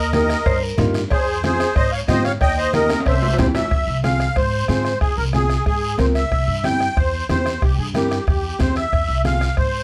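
Driving and passionate, this cumbia excerpt at 184 BPM in F minor sets a reedy, shimmering musette accordion up front over growly pizzicato upright bass, a small, woody fingerpicked nylon-string guitar, a close soft-beaten bombo, distant low-tuned congas and a raspy guiro, while a clean, dark mellow electric guitar adds a brief second line at 0.5 s and ringing, vintage cowbell and timbales sit in the background until a drum fill carries the tune into F harmonic minor at 3.7 s, all in light reverb.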